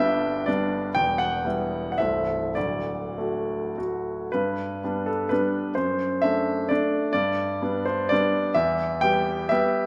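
Heard in a moderate stage-like reverb, this brief classical fragment, cut from a longer piece, features a bright, up-front solo grand piano with audible action noise and long sustain, playing a rustic, proud romantic triple-time dance in dotted rhythms with supple rubato, its opening phrase giving way to a new idea at 4.3 seconds before the cut at 9.9 seconds.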